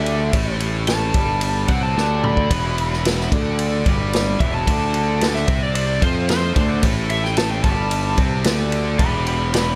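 A growly, fuzz-laden fingered electric bass sits up front with a punchy vintage drum kit, driving this gritty, swaggering excerpt of blues rock power trio and southern rock at 111 BPM in a straight 4/4, moving through A7, E7 and D7 with a drum fill at 2.0 seconds. An overdriven slide guitar played with fingerpicks carries the melody over a bright, double-tracked distorted guitar riff. Beneath them, a very quiet overdriven tonewheel organ holds thick sustained chords with key click and chorus vibrato, all within a light reverb.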